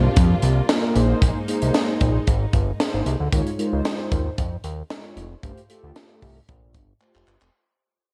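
Heard through a lush hall reverb with a big arena sound and a cassette-tape grain, this short fade-out cut from a longer piece is early-eighties boogie funk at 114 BPM in a straight 4/4, with a late-night, funky mood. A fat analog bass sits up front, its detuned sawtooth and square-wave tone thick and sustained with a fast attack and a moving notch. Mellow synth brass carries the accompaniment, brassy, round and full-bodied yet dark, thickened by chorus, vibrato and a slapback echo. A studio string section plays sustained, bowed sul tasto chords with a smooth top, sitting intimately in the background until it stops at 3.3 seconds. The tight funk drum kit comes in at 0.2 seconds with handclaps, hi-hat, a tight kick and a high-tuned snare, mid-forward and small-roomed, and ends the passage with a drum fill at 7.0 seconds. The harmony moves through C9sus4, Bb9sus4, Eb9sus4 and G9sus4.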